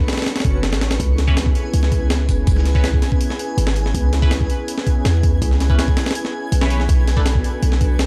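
An airy, breathy pad with chorus and vintage sampler grit opens this frenetic, atmospheric drum and bass cut at 163 BPM in C# phrygian, over a deep, boomy 808-style bass and a twinkling granular shimmer in the background, before a gritty, compressed breakbeat kit with a thumpy kick and high-tuned snare drives in up front, a very quiet electronic swell appears at 0.4 seconds, and a nasal, band-passed chord stab with phaser and dub echo enters at 1.3 seconds as the harmony moves from Bm7 to C#m7, all in a dry, gritty hardware sound with digital ambience.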